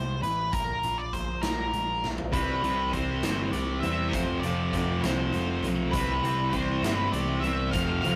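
A dark octave-fuzz lead guitar sings the melody up front in this bittersweet, restless quiet-loud alternative rock excerpt at 67 BPM in a straight 6/8, moving from C and Bb to Cmaj7 and F over full-bodied steel-string acoustic arpeggios tucked in the background, a round, overdriven electric bass and a big-room acoustic drum kit with a punchy kick that enters at 0.2 seconds and plays a fill leading into a bright, thick fuzz guitar riff at 2.3 seconds, all captured with moderate reverb in a rough rehearsal-room sound with tube saturation.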